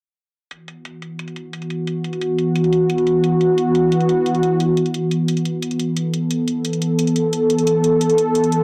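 Futuristic and mechanical, this brief excerpt of dark technical drum and bass at 176 BPM sets a bright, airy sawtooth pad with detuned chorus and a filter sweep, sustaining an E5 chord up front from 0.5 to 8.6 seconds, over quieter metallic, tape-warm electronic hi-hats muffled by a low-pass filter in a small room, all within light reverb and a dense, heavily limited modern master.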